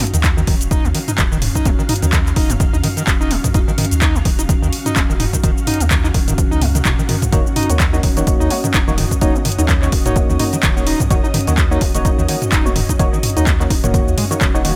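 A squelchy, resonant overdriven acid bass riff leads this raw, driving acid house excerpt at 127 BPM in Eb minor, its distortion, lush chorus and digital delay pumping to the sidechain, while an overdriven electronic kick drum and an up-front, punchy analog drum machine of handclaps, hi-hat, shaker and toms swing on the 16ths. Beneath, a round sine sub bass with tube saturation sits in the background, and a vintage sawtooth string machine holds full-bodied sustained chords over Ebm7, thickened by ensemble chorus. After a drum fill at 6.4 s, a soft, detuned chord stab with chorus and delay enters at 7.3 s, all in a dry, close mix.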